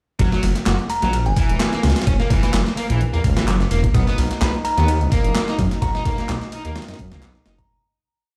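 An energetic, playful breakbeat piece at 128 BPM in F# mixolydian opens straight into the drop with a gritty, overdriven sampled break carrying a thumpy kick and a looped, edited groove, an up-front, thick, detuned saw bass playing a funky syncopated line, a double-tracked overdriven guitar repeating a 32-step riff through dub echo, and a quieter, tape-toned house kit layering handclaps and hi-hats; a crystalline FM synth bell adds short chorused, small-speaker phrases with dub echo from 0.9 s, a percussive tonewheel organ with key click, slow rotary speaker and sidechain pumping holds a sustained background pad from 3.9 s as the chords move from F#7 to Bmaj7, and the whole piece, heard in a stone-room reverb on a big sound system, fades out from 5.2 s.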